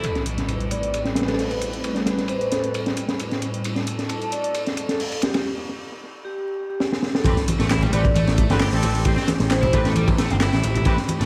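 A straight 4/4 breakbeat groove at 133 BPM drives this gritty, funky excerpt in A minor, led by an up-front, saturated acoustic breakbeat kit with a punchy kick, high-tuned snare, dark cymbals and a rolled-off top, all low-pass filtered and touched with dub echo. A quieter tape-warm analog drum machine adds handclaps and hi-hat, while a swirling, detuned sawtooth pad sustains chords, opening on Am9, with phaser, chorus and sidechain pumping. Over this, a metallic vibraphone with slow motor vibrato plays the melody through a small-speaker sound, 12-bit sampler grit and dub echo, and electronic impacts mark the opening. After a break at 5.5 s and a short drum fill, a growly, bright picked electric bass enters up front at 7.2 s, and the drop arrives at 7.3 s with another impact, tight distant jazz-style horn stabs with light vibrato, and very quiet, close ringing congas. The overdriven, double-tracked guitar, heard briefly at the start, returns with its riff just after the drop, coloured by tube saturation and dub echo, and the whole echo-heavy mix sits in light studio reverb with a layer of vinyl crackle.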